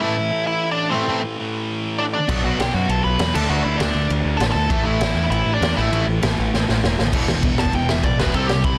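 Urgent and aggressive, this punk rock passage opens in half time with a nasal, wah-parked lead guitar melody up front over two bright, overdriven riffing guitars and a thick, double-tracked fuzz guitar in the background; a growling, overdriven picked bass and a raw garage drum kit with a boomy kick, dark cymbals and a gritty, pumping small-room sound crash in at 2.3 seconds, and after a drum fill the lead breaks into a solo at 7.1 seconds, all in a dry, dense, heavily limited modern master.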